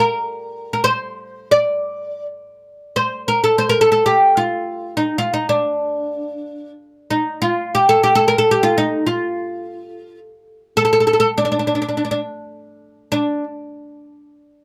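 A lone oud opens this melancholic, soulful passage of makam-based ensemble music, cut from a longer piece. Plucked with a plectrum on its fretless, double-strung neck, the oud has a bright, woody voice that sits up front. The instrument moves within a one-octave span from D4 to D5. A light reverb adds a gentle sense of space around it. The oud carries the first section alone until 13.1 seconds, where a brief new section begins, and its playing stops at 13.4 seconds.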